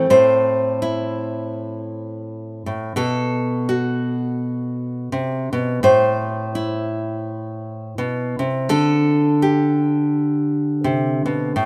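A bright, full-bodied nylon-string guitar, fingerpicked alone and up front with a classical touch, fresh strings and audible finger squeak, carries this melancholic, reflective folk excerpt at 84 BPM with a gentle swing in A dorian, moving from Am through B5 and back to Am before resting on Dsus4, all bathed in a moderate plate reverb that lends a long, spacious tail.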